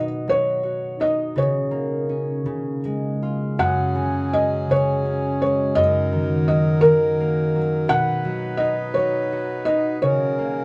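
A felt-muted upright piano sings a soft, dark melody with audible action noise over bright, ringing fingerpicked concert harp in this gentle, sleepy children's lullaby in a rubato 6/8, with a reedy, breathing pedal harmonium adding sustained chords from 3.6 seconds, all played live in one room with moderate studio reverb in this excerpt from a longer piece.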